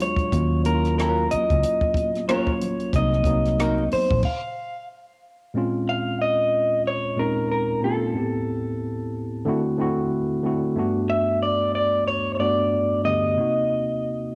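A slightly broken-up, fingered electric guitar melody through a small old amp sits up front from the first moment. It is joined immediately by a worn, slightly out-of-tune tine electric piano, a compact cocktail drum kit with dark cymbals and a punchy kick, and very quiet, distant congas with a damped, thick-skinned tone. This late-night, smooth R&B and neo-soul passage, cut from a longer piece, moves at 92 BPM in 4/4 with a swing on the sixteenths. A round, foam-muted fingered electric bass with transformer saturation enters almost at once, and a clean, hollow-body archtop guitar briefly adds a compressed, picked second line. Around 4.2 seconds the bass, drums and congas stop, and the guitar and electric piano carry on through changes from Bbm7 toward Gmaj7 until 14.3 seconds. The piano, drums and archtop carry a cassette-tape grain, and a moderate spring reverb surrounds this homespun recording.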